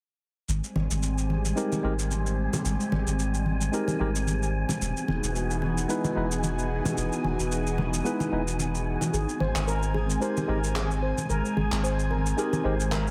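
A relaxed, blissful sunset chillout excerpt at 111 BPM with a swung 16th feel opens at 0.5 s with a deep, round analog bass carrying a filter sweep and gritty overdriven sampled shaker and handclaps. These are soon joined by a breathy pad with chorus and phaser, distant congas in the background, a dark wind-like tuned noise texture and a barky tine electric piano with delay, as the chords move from Abmaj9 to Emaj7 and back. At 9.1 s a shimmering, mellow steel pan adds arpeggios through delay, all within a mix of light reverb and a heavily compressed radio sound.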